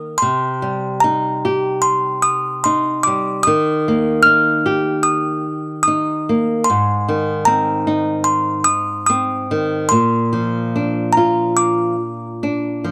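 A delicate, tinkling music box carries the melody up front, its bright, plucked notes sitting high over a fingerpicked acoustic flamenco guitar that plays close and warm beneath it. This sleepy, tender lullaby moves in a loose, rubato 4/4 through Cm, Ebadd9, Ab and Bb. It is a short fragment of a longer piece, heard in a dry, close 1970s-style studio recording with a small room ambience.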